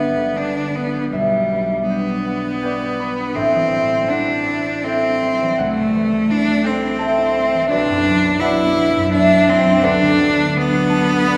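Unevenly pulsed and rubato in 3/4 at about 83 BPM, this serene romantic classical passage for cello and harp sets a focused, bowed cello melody with vibrato, sitting between G3 and E4, over bright, ringing fingerpicked concert harp accompaniment that spans G1 to C6, both up front in a reverberant church acoustic with a long 3.0 s tail, as the harmony moves from G through Am7 to Bm/D across 11.4 seconds.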